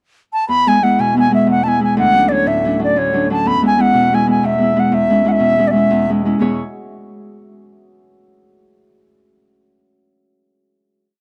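A lively, bright Celtic slip jig in 9/8 at 121 BPM in E mixolydian, this short whole piece sets a pure, reedy wooden flute with vibrato and a crisp attack on motif-based song phrases up front, from 0.3 seconds, over a fingerpicked Celtic harp whose ringing bass notes and chord figures carry the pulse through E, Dmaj7 and back to E before settling on a final E6 chord at 6.4 seconds, all captured as a dry, close 1970s-style studio recording with light reverb and small room ambience.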